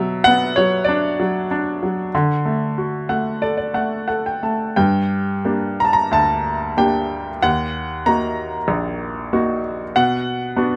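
Heard up front in light reverb, an intimate, bright baby grand with audible action noise and short sustain plays this bittersweet, cool fragment of a lyrical classical solo piece at 92 BPM in 4/4 with uneven, rubato timing, tuned to A4 = 442 Hz and ranging from Bb1 to Bb5, moving from Bm to D, adding a fill from 2.8 to 4.8 s, then settling into G harmonic minor at 4.8 s through Gm and Ebm before returning to Bm.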